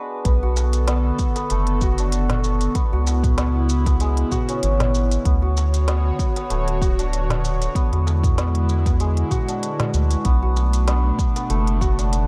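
Warm and hypnotic, this organic downtempo piece cut from a longer track moves at 96 BPM in B dorian with a lightly swung 16th-note feel, as a bright, shimmering santur plays delayed arpeggios from the opening over an airy, breathy pad of chorused, sidechain-pumped chords, a very quiet meditative bronze singing bowl, a round analog bass sitting up front, a deep tape-warm electronic kick, an organic electronic kit of woody snare, crisp hats and shaker, and a clay-shelled darbuka in the background, all moving through Bm7, C#m7, Dmaj7 and E7 in a dark, dry production.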